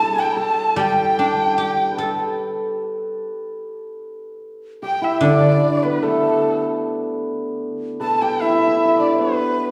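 Graceful and pastoral, this short passage from a longer Chinese traditional chamber piece moves in a free, rubato 4/4. A breathy bamboo xiao carries the melody, its end-blown tone tongued and slightly unsteady with vibrato, close-miked yet sitting in the background. A shimmering hammered dulcimer, set up front, and a warm bowed erhu, played by one player with expressive portamento and vibrato, shape the second lines. The guzheng accompanies with fingerpicks, its silvery, ringing notes up front until it stops at 7.6 seconds, while the other three parts carry on to 9.7 seconds. A wet recital hall reverb with a 1.6-second tail places the ensemble further back in the room.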